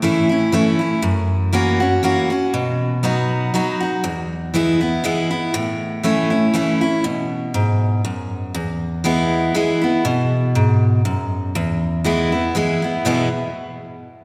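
A lush concert-hall reverb, lingering about 2.5 seconds, surrounds this joyful, rustic bluegrass passage, cut from a longer piece in E major at 120 BPM in a lightly swung 3/4. A bright, full-bodied picked steel-string dreadnought guitar plays alone and up front from 0.0 to 13.3 s, ranging from E2 to F#4 over chords that move from A through F#7, B and E. A new passage begins at 10.1 s, moving from B5 to E before the guitar's last notes at 13.3 s.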